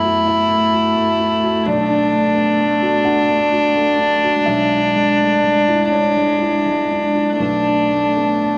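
A home cassette recording with a vintage tape character, set in a small room with a moderate spring reverb. This short fragment of neoclassical piano and strings is melancholic and reflective, moving in a rubato 6/8 at roughly 39-44 BPM in B dorian. Up front, a single bowed violin carries the melody with a rich, pure, floating tone and a soft attack, played sul tasto and sounding distant. Behind it, one cello adds a second line in the background, close and intimate, with light vibrato and an airy bow. A felt-muted upright piano gives mellow, smooth accompaniment across a broad register as the harmony moves through F#m7, Bm7 and E7/B before settling back on Bm7 at 7.4 seconds.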